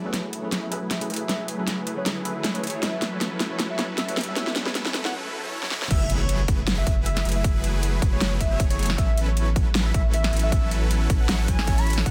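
A dense, heavily limited modern master with little reverb carries this playful, lush future bass passage at 156 BPM in A major, swung and felt in half-time as it moves between F#m11 and A69. A velvety, wave-folded synth lead sings the melody over huge, detuned supersaw chords under a filter sweep. Beneath them sit a tine electric piano in the background with vintage sampler grit, a very quiet shimmering pad, and a dubstep kit with a huge snare and metallic hats, whose fill, joined by a riser, builds toward a break at 5.1 seconds. At 5.9 seconds the drop lands with an impact, bringing in a punchy electronic kick and an up-front, saturated sine sub bass pumping beneath the chords.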